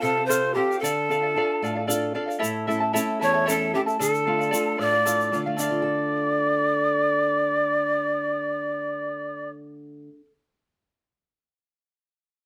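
Swaying in 6/8, this wistful yet festive Andean folk fragment puts close-miked, reedy cane pan pipes with vibrato and a crisp chiff up front on the melody, joined by a hollow, mellow quena second line in a higher register, over shimmering double-strung charango and a small fingerpicked nylon-string guitar with finger squeaks and a fill at 1.6 seconds, while a grainy egg shaker stops at 5.8 seconds and both winds end at 9.5 seconds in light reverb.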